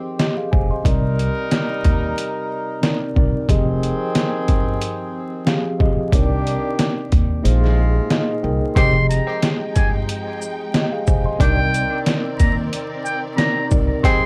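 A swung boom-bap hip-hop groove at 91 BPM in C minor sets a reflective, dark mood, built on a muffled, pitched-down sampler-style drum kit with a thumpy kick and overdriven snare up front, a woody pizzicato upright bass, and a mellow tine electric piano with a cassette tint cycling through Fm9 and Cm9 while a loose, mellow horn section adds delayed stabs. At 7.4 seconds the kick drops out over a Bb9sus4 chord, and shortly after the electric piano plays a short fill. At 8.8 seconds a buzzy, whispered muted trumpet enters high with scooped notes and light vibrato, backed by lush bowed string chords, all under light reverb and vinyl crackle in this fragment of a longer piece.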